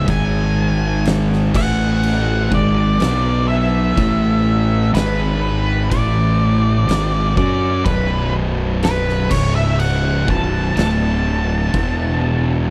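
A dry, close-sounding fragment of brooding, sludgy stoner and doom metal crawls along at 62 BPM in 4/4, with a double-tracked, up-front fuzz guitar grinding through a thick riff while a growly, overdriven fingered bass fills the low end. An oversized, low-tuned acoustic drum kit enters at 0.1 s, its fat snare, punchy kick and dark crash cymbals sounding saturated and gritty in a bright stone room that pumps. Over the top, a dark octave-fuzz lead guitar with tape echo plays a distorted, picked solo throughout the 12.7 seconds, circling between G#5, A5 and B5 before closing on C#5, B5, D5 and E5.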